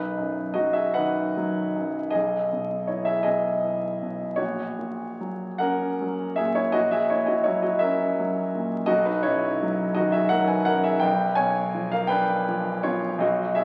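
Flowing in a lilting 12/8 with free, breathing rubato, this fragment of a romantic classical nocturne drifts along at roughly 47-57 beats per minute, counted in dotted quarters. A concert grand piano plays alone throughout the 13.6 seconds, reaching from A#1 up to G#5. Its tone is intimate and smooth, with a deep bass and audible action noise, and the instrument sits up front. In B major, the harmony moves from B through C#m9/B and F#7/A#, returns to B at 8.9 seconds, then turns to a shaded Bdim at 11.0 seconds. A wet recital hall reverb gives the notes a soft halo, while the crackle of a very old 78 rpm record lends the sound a vintage, time-worn patina. The mood is serene and dreamy, like a quiet reverie heard through the haze of memory.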